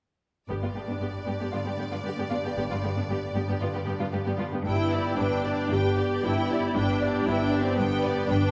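Up-front, smooth violas carry the accompaniment in this triumphant, soaring heroic adventure film cue in G major at 115 BPM, while a rich, close violin section sings the melody above a dark, woody second violin line, lush cellos and a clear, focused double bass section anchor the bass, a very quiet concert harp rings out fingerpicked arpeggios, and a smooth-topped French horn section enters with sustained chords at 4.7 s, the ensemble heard in a wet church acoustic in this short fragment of a longer piece.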